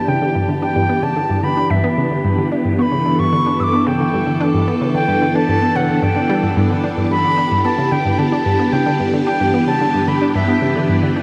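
An airy wooden flute carries the melody up front through tape echo, over swirling, phased string-machine chords and a round, detuned analog pluck riff, with a very quiet, dark analog drone entering at 0.2 s beneath this luminous, cosmic ambient excerpt in G major at 111 BPM, all suspended in a vast cathedral reverb.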